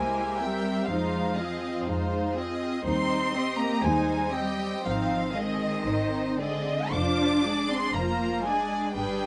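Classical string-orchestra writing in a slow romantic vein, this elegiac, melancholic passage from a longer piece unfolds with a flexible rubato feel in 4/4. One violin section carries the melody up front, intimate and softly attacked with light vibrato and a sul tasto veil, while a second, bright and more distant violin section traces a focused line beneath it. Smooth, lush violas fill in the accompaniment as a close, rich cello section and a focused double bass section anchor the low end, all in a light reverb over harmony that drifts from C7 through Fm7 and Ab to a half-diminished chord at 6.9 seconds.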